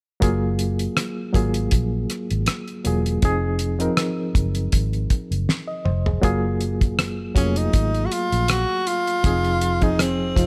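Bittersweet and silky, this short excerpt of lush 1970s-style soul moves at 80 BPM with a lazy sixteenth-note swing, as a barky, lightly overdriven electric piano with fast tremolo shimmers over Gbmaj9 and Fm7 chords, a round, foam-muted fingered bass and a damped, dry drum kit with a fat snare and tight kick hold a small-room groove, and after a drum fill at 5.5 seconds a breathy, close-miked tenor saxophone enters at 7.4 seconds with a clear, vibrato-laced solo line.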